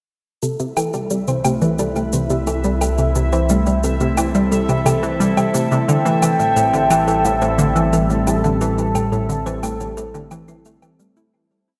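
A dreamy, reverb-soaked hall wash carries this cosmic, hypnotic piece of ambient, sequencer-driven space music at 88 BPM in A minor, where an up-front, round analog pluck repeats a 5-step riff drifting against the bar over a detuned sawtooth drone bass, a dark tine-like thumb-piano pluck spins 12-step arpeggios in the background, a morphing, warbling wavetable pad with phaser holds chords moving from Cmaj7 to Am7, a bubbling resonant filter texture and a light shaker and woodblock pulse glimmer around them, and a smooth, nasal synth lead with vibrato sings arching motifs from 5.9 seconds before the whole fades out from 7.7 seconds.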